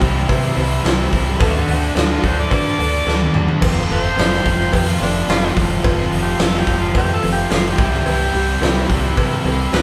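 A raspy tenor saxophone takes the solo from 1.7 seconds, its gritty tone carrying scooped notes, light vibrato and a smooth top in a pop style over a swaggering, sunny classic rock groove at 108 BPM in straight 4/4. Up front, a big acoustic rock drum kit in a bright stone room drives the band with a punchy kick, a medium-tuned snare, hi-hat, crash and toms, adding a short fill between 3.1 and 3.6 seconds. A growling fingered electric bass, overdriven and direct and amped, anchors the low end, while three picked guitars play the riff further back: a cranked stack guitar with bright overdrive, a hollow-bodied semi-hollow guitar, and a very quiet double-tracked distorted guitar. A jangly, detuned honky-tonk upright piano sits very quietly underneath with a woody, vintage short-sustain accompaniment, and a metallic cowbell joins in the background from 0.3 seconds. The chords move from C to D and F before returning to C, and the light reverb gives the feel of a band playing live in one room in this fragment cut from a longer piece.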